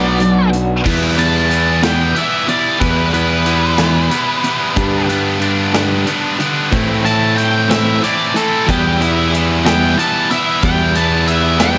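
Brooding and angsty, this short cut from a longer piece of quiet-loud alternative rock moves at a slow 61 BPM in a straight 6/8, centered on E minor. A dark, fuzzy octave-fuzz lead guitar carries the melody, taking a solo from 0.9 seconds to the end over chords that move from Bm to Em, then G, Am and back to Em. Beneath it, a heavy, double-tracked high-gain guitar drives a bright, distorted riff up front, matched by a growly, overdriven fuzz bass that sits just as forward. In the background, an electric guitar through a small old amp plays slightly broken-up arpeggios with tremolo, its tone warm and compressed. A big acoustic rock kit enters at 0.2 seconds with a punchy kick, a medium-tuned snare, hi-hat and bright crash cymbals, all set in a studio room with light reverb and a rolled-off top end.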